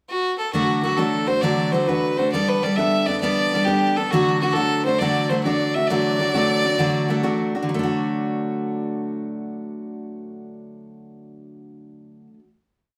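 A bright, biting fiddle leads this short, rollicking Celtic slide in D major, playing a motif-based melody in period phrases with light vibrato and an airy bow from 0.1 to 7.4 seconds, close and up front. A picked steel-string acoustic guitar, full-bodied and jumbo in tone, enters at 0.5 seconds to strum eighths in open chord shapes through D and Gadd9 at 134 BPM in a straight 12/8, then rings on alone into the final chord until 12.5 seconds. Both sit in a wet studio reverb heard from further back in the room.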